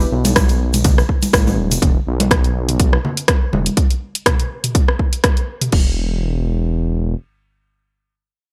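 Warm and driving, this afro house cut at 123 BPM with a light 16th-note swing opens on a drop, where a deep, rumbling detuned saw bass pumps under the sidechain, a grainy, distant tube shaker and bright, band-limited congas add texture, and a punchy, up-front electronic kick joins an overdriven house drum kit of crash, hi-hat, rim click and toms before the drums stop at 5.8 seconds and the bass carries on alone until 7.1 seconds.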